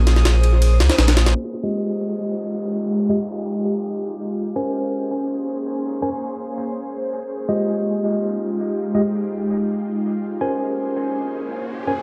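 An echo-heavy, low-pass-filtered drum and bass and jungle excerpt in F minor and free time, dark and frenetic, where a bright, ethereal pad with phaser and 12-bit grit sustains Bbm9 and Fm9 chords under a filter sweep from 1.4 s, a mellow tine electric piano drops dub-echoed stabs, a round sub bass, gritty pitched-up jungle drums with ride and a high-tuned snare, and a glassy harmonics texture sound only until about 1.4 s, and a background downlifter and riser return near the close.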